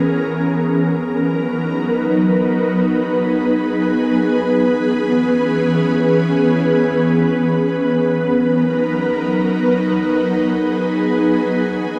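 Blissful and dreamy, this hip hop excerpt in B major drifts in free time as a lone ethereal, full-bodied pad of detuned sawtooth and triangle voices, softened by slow attack, long release, ensemble chorus and tape echo, sustains mellow and up front from 0.0 to 12.0 seconds through C#m7 and Bmaj7 chords inside a reverb-soaked plate wash.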